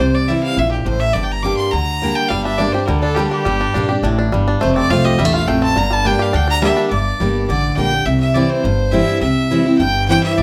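Rustic and lonesome, this short bluegrass fragment from a longer piece features a clear, earthy bowed fiddle with light vibrato soloing until 6.9 seconds over a full-bodied, picked jumbo acoustic guitar and a woody, thumpy pizzicato upright bass on gut strings, while a bright, twangy banjo played with fingerpicks adds percussive arpeggios from 2.3 to 6.9 seconds, the whole set in light reverb.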